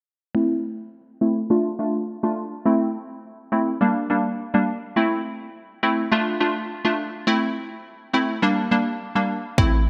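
Bouncy and tough, this dancehall excerpt moves at 104 BPM in a straight 4/4, set in A phrygian. A glassy wavetable pluck carries the accompaniment from 0.3 seconds, its crystalline, up-front tone treated with chorus and a low-pass filter that sweeps across the passage, spelling out a cycle of Am, Dm and Bb6 chords. At 9.6 seconds a deep, boomy 808-style bass with a sine body, a noise layer and a fast, decaying attack drops in on a low A, joined by a tight electronic kick drum re-recorded in a large room. A moderate plate reverb and bright 1980s-style digital production frame the whole.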